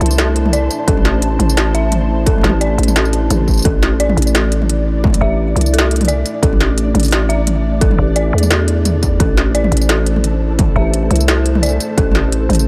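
A growling, buzzy 808-style bass sits up front in this tense, cinematic half-time drum and bass excerpt at 173 BPM in A minor, joined by a distorted electronic kick from 0.9 s, an industrial kit with a clanging snare, smooth hats and tambourine, a moody analog pad pumping with sidechain and 12-bit sampler grit, eerie inharmonic FM bell arpeggios through chorus and digital delay, and a flickering granular texture in the background.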